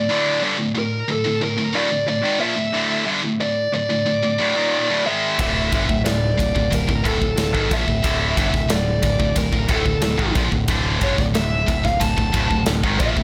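A dark, distorted bluesy lead guitar carries the melody across the range of A4 to A5 over two bright, picked rhythm guitars grinding out a D5-based riff in this dark, relentless heavy metal excerpt at 91 BPM, with a growling, punchy overdriven bass and a big acoustic drum kit of punchy kick, medium-tuned snare and bright ride joining at 5.4 seconds, all set in light reverb and small room ambience.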